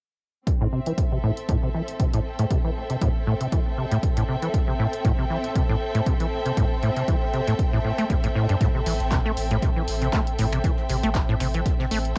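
From 0.5 seconds, a trippy, gritty acid house groove at 118 BPM in A minor opens on an Am7 chord, with a punchy, tape-toned electronic kick up front, an analog drum machine's finger snaps, handclaps and hi-hat, and distant, woody symphonic strings bowing with vibrato and pumping to the kick, while a squelchy, resonant sawtooth acid bass riff, tube-saturated with analog chorus and delay, runs under a filter sweep throughout. A very quiet, dry 70s drum kit adds hi-hat and snare at 8.6 seconds, and a round, deep analog bass on A1 joins at 8.9 seconds, all in a lightly reverberant home cassette recording cut from a longer piece.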